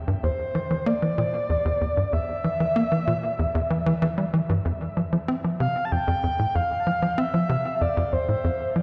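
A straight, even 4/4 pulse drives this short ambient passage, cut from a longer piece, with a cosmic and mysterious mood. A tight sequencer bass enters at 0.1 s with a punchy, nasal riff built from sawtooth and square-wave tones, ring modulation and a plucked filter. Its fast-attack notes decay under analog chorus and tape echo. A breathy, flute-like synth lead arrives at 0.2 s, carrying a soft, sustained melody of triangle and sine tones with a noise layer and vibrato, treated with its own chorus and tape echo. Both parts sit up front in an echo-heavy mix, wrapped in a wet echo-chamber reverb. The opening stretch leaves the harmony unstated until an F5 chord arrives at 4.7 s and carries the passage to its close at 8.8 s.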